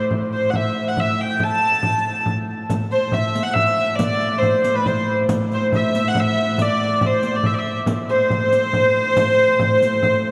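A cathedral's long, wet reverb surrounds this brief fragment of a medieval dance in triple time, lending it a mysterious, ancient air. A viola da gamba holds a low drone from the start, its gut-string tone reedy and ringing with a light vibrato and an airy bow. Almost at once a small, bright frame drum comes in, and the hurdy-gurdy enters at 0.3 seconds, carrying the melody up front with a nasal, earthy voice that still sounds somewhat distant. At 2.7 seconds a very quiet riq joins with dark jingles struck by hard hands. The hurdy-gurdy sits loudest in the mix, while the drone and drums stay beneath it in the spacious acoustic.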